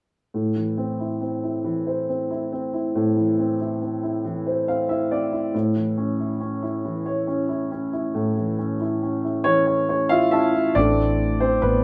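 Recorded as a band playing live in a small, reverberant room, this melancholic, dramatic pop excerpt in A minor moves at a slow 46 BPM in 6/8. A warm, open baby grand piano sits up front with long sustain, carrying the accompaniment from Am to A and adding fills around 4.2 and 9.4 seconds before taking a solo turn at 10.8 seconds. At that point a dark, foam-muted fingered electric bass enters with a round, punchy tone, sitting on a low A.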